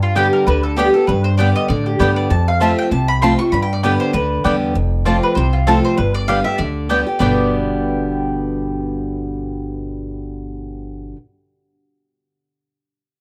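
A dry, close studio sound with a 1970s character puts the lead mandolin, guitar and bass up front in this short cut from a longer bluegrass tune, joyful and virtuosic at a brisk 196 BPM in 4/4 with a light swing on the eighths. A round, double-strung mandolin carries the melody from the first second, ranging from F4 up to C#6 in G mixolydian. A second mandolin joins at 0.2 seconds with woody picked stabs, while a boxy parlour-style steel-string guitar picks out the accompaniment and a thumpy pizzicato upright bass anchors the low end. The harmony moves between G and F throughout. The playing runs through three short sections in about eleven seconds, with all four parts sounding together to the end.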